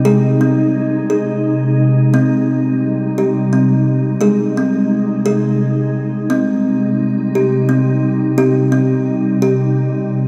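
A gentle, straight 6/8 pulse carries this short, hypnotic cut from a meditative world piece, where a woody, hollow-bodied kalimba plays up-front arpeggios over a dark, glassy FM pad whose slow-attack chords shimmer with ensemble chorus as they alternate between Ab and C minor, all soaked in a huge, dreamy reverb.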